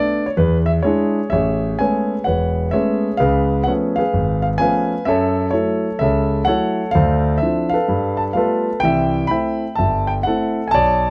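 A concert grand piano opens this short solo jazz excerpt alone, sounding intimate and up front with a deep bass and audible action noise. The mood is sophisticated and swinging, at 128 BPM in 4/4 with a swung eighth-note feel and a rubato touch, centred in A major. The single piano carries everything, ranging from E1 up to B5 with a smooth, vintage character. After an E7 at the start, the harmony moves at 1.3 seconds through Amaj9, C#7b13 and F#m7, then turns to Dm9, G9 and finally C6 at 8.8 seconds. Light reverb and a dark, warm production wrap the instrument.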